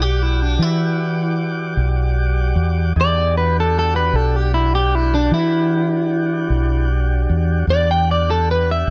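Smoky and soulful, this short passage cut from a longer piece is a slow blues in 12/8 at 51 BPM, sitting in E minor over a single Em9 chord. An electric guitar at the edge of break-up carries the melody as a solo from start to finish, its picked, twangy tone bright and slightly broken-up, placed up front in the mix. Beneath it, a tonewheel organ holds sustained chords, smooth and clean, its slow rotary speaker lending a gentle vibrato while it sits lower in the balance than the other parts. A mellow fretless electric bass anchors the low end with a round, punchy sound, dark, direct and amped, treated with analog chorus and set prominently forward. All three parts play together throughout the 8.9 seconds, framed by a light reverb.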